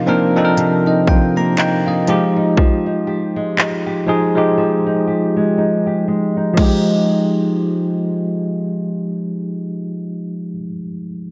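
A swung trap groove of hard-clipped kick, crisp hi-hats, handclaps and crash enters at 0.6 seconds alongside a bell-like, clean tine electric piano and a fingerpicked flamenco guitar playing arpeggios through delay, all three up front in a lush hall reverb, giving this moody, late-night contemporary R&B fragment a filtered sheen before a silent gap at 4.6 seconds and the drums stopping at 6.8 seconds.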